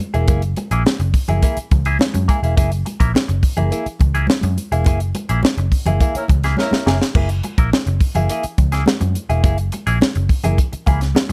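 A lightly reverberant, polished studio sound frames this gritty, energetic funk excerpt at 105 BPM in F# mixolydian, built on a single F#9 chord. Up front, a crisp fusion drum kit with a punchy kick, high-tuned snare, hi-hat and dark crash cymbal drives the groove alongside a round, foam-muted picked electric bass, while a bright, twangy clean electric guitar with wah and compression and thin-skinned congas in the background fill out the texture. A band accent lands from 4.9 to 7.2 seconds, where a distant, mellow horn section with light vibrato and octave doubling briefly appears from 6.2 to 7.0 seconds, overlapping a drum fill that begins at 6.6 seconds.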